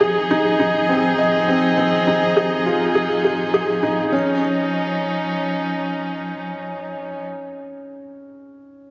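A felt-muted upright piano and a rich string quartet open together, the piano's soft, intimate riff carrying audible action noise and a diffuse ambient delay while the bowed quartet holds sustained chords with smooth vibrato. This luminous, hopeful piano and strings electronica moves from Fm7 to Dbadd9 at 4.1 seconds, and the strings stop at 7.2 seconds as the piano continues to 8.9 seconds. A lush hall reverb soaks the dreamy mix, lending the chamber-scale playing a hazy glow in this short cut from a longer piece.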